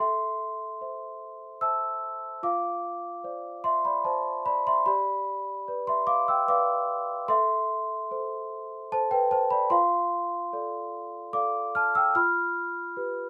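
Dreamy and tender, this 13.3-second excerpt from a longer classical lullaby sets a large solo celesta, bell-like, sweet and darkly ringing, up front in light reverb at 74 BPM in a straight 3/4, spanning F4 to F6 over chords that move from Am through Dm7/F and G7 before returning to Am, passing through Dm/F and ending on G7/F.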